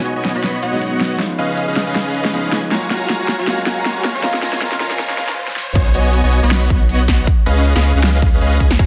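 A dense, heavily limited modern mix sits in a moderate digital room, carrying this bright, lush future bass excerpt at 158 BPM in half-time with a light 16th-note swing, tuned to A4 = 443 Hz. A soft, felt-muted upright piano and a huge, detuned supersaw riff pump against the sidechain through tape echo, as a saturated sine sub bass and an overdriven big-room kit with a huge snare and metallic hats drive a filter-swept build-up over B6, C#7, F#maj7 and A#m7 chords, with a very quiet riser from 3.2 s. At 5.8 s the piano drops out and the drop lands, with a punchy, overdriven electronic kick up front beneath the supersaw and sub bass.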